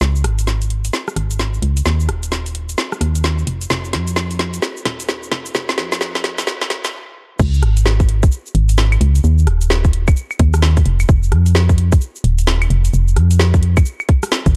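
The rhythm is a swung two-step garage groove at 130 BPM in 4/4, with the 16ths pushed to a 62% swing that gives this moody fragment of a longer track a bouncy lilt. A hollow, organ-like FM bass sits up front from the start, its percussive, fast-attack notes decaying between Eb1 and F2 while sidechain pumping makes it breathe against the beat. The layered garage kit runs alongside it through claves, shaker, rim clicks, a crash, metallic hi-hats and a woody snare, playing a fill during the opening build-up as a filter sweep runs across the passage. At 6.9 seconds the music stops briefly, and at 7.4 seconds it drops back in with a tight, up-front electronic kick joining for the rest. The production is dark and dry, with little reverb and a high-pass filter shaping the mix.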